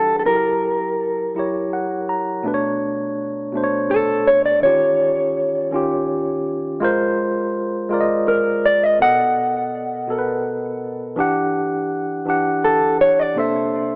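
A dark, clean electric guitar sits up front and carries the melody across the full 14 seconds, its fingered tone trailed by tape echo. This sultry, late-night R&B fragment, cut from a longer piece, moves at a slow 55 BPM counted in dotted quarters, in 6/8 with a straight feel. Beneath it, a mellow tine electric piano plays accompaniment, clean and direct, and it steps forward with a fill from 1.4 to 2.4 seconds just before the second section begins. The harmony drifts through lush extended chords, from F#7b9 through Bm9, D#9, G#69, B7 and Em9 before landing on C13. A moderate plate reverb lends a long, glowing tail, while an AM radio coloring gives the whole mix a narrow, nostalgic cast.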